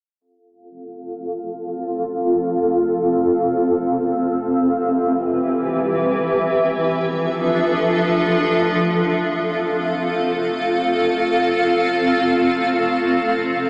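A granular cloud pad, cloudy, blurred and detuned with a slow attack and long release, enters at 1.1 s and sustains chords up front until 13.7 s, its mellow triangle tone shifting under a moving notch. This playful, intricate IDM excerpt floats in free time in F lydian, moving from F through Cmaj7/E and Dmadd9/F before returning to F at 9.0 s, with a filter sweep shaping the pad through the first 9.0 seconds. The sound sits in a huge, wet ambient reverb and is narrowed by a low-pass filter that gives it a small-speaker quality.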